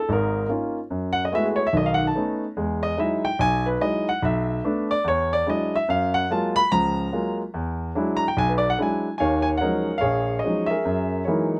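A polished, present grand piano carries this short solo jazz excerpt on its own, swinging in 4/4 at 145 BPM with a cool, moody air and tuned slightly under standard pitch at A4 = 439 Hz. Its lush extended harmony moves from Db69 through Gbm11, B9 and Emaj9, then on through Bm7, E9, Gbmaj9 and E9 again, before turning at 9.2 seconds to a new passage on Ebm11 and Gb13. Close, detailed miking keeps the instrument up front in a light reverb.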